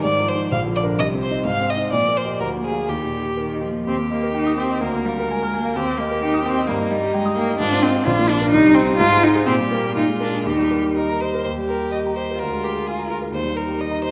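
A quick classical-period movement for piano trio in Eb major, graceful and lively at 128 BPM in 2/4 with a rubato feel, heard as a short excerpt from a longer piece. A clear, focused violin carries the melody with vibrato over a rich, bowed cello second line, while a concert grand piano with deep bass supplies accompaniment up front. All three play throughout the 14.1 seconds in a moderate concert hall reverb, with the harmony circling through Fm7/Ab, Bb and Cm before settling on Eb.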